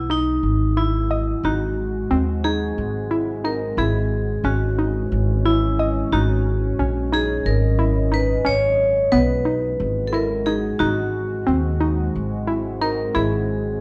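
A bright, ringing vibraphone played with hard mallets carries the second line up front in this pensive, restless excerpt of contemporary chamber music, moving in 7/8 at 179 BPM counted in eighths with a straight feel. A thumpy pizzicato upright bass sits close beneath it, while a woody, wave-folded pluck with chorus spins arpeggios and a deep, detuned ambient pad enters at 0.3 s with sustained chords. The harmony circles over a G# bass through Esus2, G#7, C#m and D#m7, all within a dark, warm production with light reverb.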